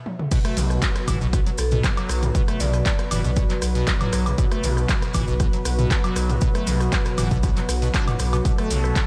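Acid house at 118 BPM with a raw, trippy mood: after a brief drum-machine fill at 0.1 seconds, the drop lands at 0.3 seconds on a B5 chord, driven by an up-front, punchy electronic kick and an analog drum machine re-recorded in a small room, playing crash, handclaps, hi-hat, rim click, toms and woodblock. A squelchy, resonant square-wave acid bass riff with a filter sweep, lush chorus and analog delay sits over a deep, tube-saturated sub bass, while a smooth, detuned sawtooth pad holds sustained chords, with both the sub bass and pad pumping against the sidechain. In the background sit grainy, dry maracas and a very quiet big-room rock kit of hi-hat, shaker and snare, and from 1.6 to 3.1 seconds a vintage, band-limited vibraphone adds a brief metallic, ringing melody through tape echo, all under light studio reverb.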